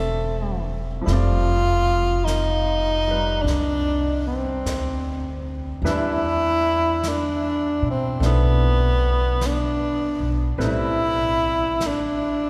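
Jazz ballad with a swung feel, melancholic and intimate, cut from a longer piece. A breathy tenor saxophone carries the melody up front as a solo, its whispered, soft-attacked notes scooped and shaded with vibrato. Beneath it sits a woody, thumpy pizzicato upright bass with steel strings, also prominent. A bright, brilliant grand piano accompanies in the background. A jazz brush kit enters at 1.1 seconds, its brushed snare and hi-hat tucked behind with a natural, small-room sound. The harmony moves from Am7 through F13 and Em7 to Am9, and a long, wet cathedral reverb gives the performance the resonance of a church or concert hall.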